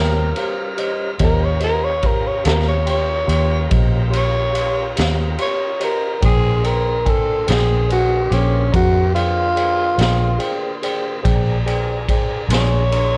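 A gritty, rollicking slow blues in 12/8 at 48 BPM, this excerpt from a longer piece centers on a growling tenor saxophone solo, breathy and raspy with subtone, vibrato and scooped notes, riding up front over Eb13 and Bb13 chords in Eb mixolydian. A dark, round, foam-muted electric bass and a tine electric piano heard through its built-in speakers support it, while a tonewheel organ holds sustained chords with key click and fast rotary speaker, and a raw garage drum kit of punchy kick, high-tuned snare and dark ride cymbal, saturated in a pumping small room, enters at 0.4 seconds. The dry mix carries the worn, warbling pitch drift of old cassette tape.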